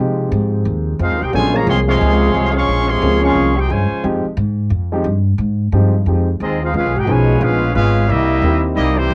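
Brassy and swinging, this short big band swing passage in F minor at 178 BPM rides on a woody, up-front pizzicato upright bass and a deep-toned concert grand piano accompanying through Fm7, Bbm9, Db7 and C7#9, while a clear, vintage trumpet section with vibrato carries the melody over a warm trombone section with light vibrato from 1.0 to 4.0 seconds and again from 6.4 seconds, the piano and brass tinted by cassette tape within the light reverb of a home cassette recording.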